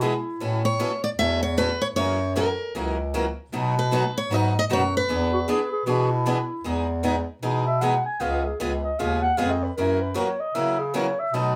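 Two picked acoustic guitars, both bright with fresh strings and one of them boxy, open this playful, swinging jazz manouche fragment at 154 BPM, over a clear, up-front bass clarinet line with light vibrato and scooped notes. From 0.7 seconds a parlour-style steel-string guitar carries the melody with picked notes and audible finger squeak. A breathy, dark clarinet with subtone and soft attacks returns at 5.3 seconds and takes an intimate, whispered solo from 6.6 seconds as the music settles into E major over Emaj7, C#7 and F#7 chords in a moderate studio room.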